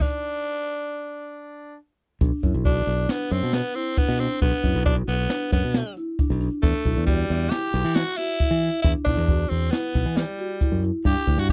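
In a straight 5/4 at 136 BPM, this intricate, driving progressive instrumental opens with a stop-time passage of raspy, forceful tenor saxophone carrying the melody up front over a brushed drum kit with dark cymbals, a high-tuned snare and a boomy kick, before a growly, bright fingered electric bass and a woody, mellow marimba with soft mallets playing arpeggios in the background join at 2.2 seconds on a B minor chord, all captured in a dry, close 1970s-style studio sound.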